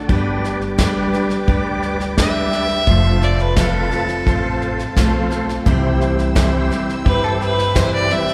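A clear, earthy fiddle with light vibrato takes the melody from 2.2 seconds in this heartfelt, nostalgic honky-tonk and classic country piece at 86 BPM in G mixolydian, moving through G, F and C over a bright, full-bodied picked dreadnought acoustic guitar, a thick, lightly overdriven percussive tonewheel organ with key click, chorus vibrato and a slow rotary speaker, a soft sul tasto chamber violin section sustaining chords in the background, a woody, thumpy pizzicato upright bass, and a soft brush drum kit with punchy kick, all set in a lush church reverb.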